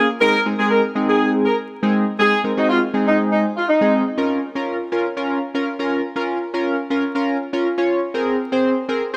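A straight 4/4 pulse at 121 BPM drives this short pop excerpt in Bb minor, giving it a driving, energetic feel. A mellow horn section carries the melody from the start, tight and pop-styled yet distant and roomy, with tape echo trailing its lines before it drops out at 4.0 seconds. Underneath, a chorused polysynth plays the accompaniment throughout, its retro, glossy tone built from detuned sawtooth and pulse waves with pulse-width modulation, a filter sweep, fast attack and sustained notes. After the horns stop, the synth carries on alone to the end at 9.2 seconds, moving from Ab to Bbm at 4.2 seconds and settling on Abadd9 near the close. Light reverb, studio ambience and a layer of vinyl crackle lend the recording a lived-in, nostalgic surface.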